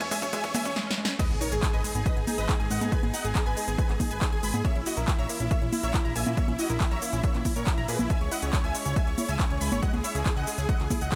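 A punchy, up-front electronic kick, re-recorded in a small room, anchors this soaring, euphoric uplifting trance excerpt, with a big-room dance kit of crisp hats, punchy snare, handclaps, congas, shaker and crash cymbal, while a very quiet riser and impact sweep through the first 2.9 seconds. A huge, detuned supersaw carries the melody with vibrato, dub echo and sidechain pumping, shadowed by a very quiet, round analog pluck on a second line, as a tight sequenced synth drives arpeggios through chorus, phaser and cassette tape colour. Bowed strings float pure sustained chords in the background, and from 1.3 seconds a fat, tube-saturated analog bass pumps beneath the drop as the harmony moves from G#m through A#dim to C#m under light reverb.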